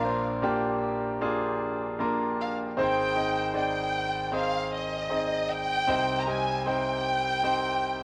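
Worn, warbling cassette tape with a moderate plate reverb colors this hopeful, emotional pop ballad excerpt at 77 BPM in 4/4, where a lush, expressive violin section carries the vibrato-rich melody over an intimate concert grand piano accompaniment of deep bass, long sustain and audible action noise, moving through Bb, Ab and C minor.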